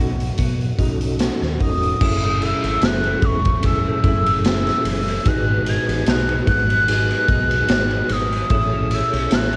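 A hollow, woody synth lead with a soft attack and subtle chorus opens this wistful, hazy bedroom-pop excerpt, singing a sustained melody high above a picked, clean electric guitar, a mellow, flute-like tonewheel organ and a round, dark fingered bass. At 0.2 seconds a raw garage drum kit comes in, up front, gritty and saturated, with a punchy kick, a medium-tuned snare, hi-hat, ride and crash ringing in a bright stone room that pumps. The tempo is a slow 74 BPM in 4/4 with a light swing on the sixteenths, set in F# dorian and tuned slightly sharp of standard pitch. The guitar carries an analog chorus with warbly pitch drift and cassette-tape colour, while the organ spins through a fast rotary speaker with chorus vibrato and audible key click. After a brief opening on B7, the music settles at 2.0 seconds into a longer passage moving between F#m7 and G#m7, all wrapped in light reverb and the soft haze of a home cassette recording.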